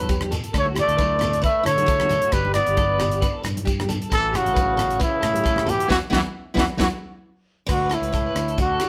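A straight 4/4 groove at 134 BPM drives this joyful, carefree highlife guitar band fragment in D major, built on a tight, dry funk kit with high-tuned snare, crash, hi-hat and rim click, and a round, punchy fingered electric bass, with distant, grainy shekere and ringing congas in the background until the congas drop out at 6.9 seconds. Up front, a breathy trumpet sings the melody with scooped notes and light vibrato, while a buzzy trombone with metal mute carries a second line behind it, a full-bodied picked steel-string acoustic guitar supplies accompaniment, and a bright, twangy clean electric guitar plays arpeggios through tremolo. The band hits an accent from 5.9 to 7.7 seconds, capped by a drum fill, before the chords land on Dadd9 as a new section begins, heard as a live band in one room with moderate studio reverb.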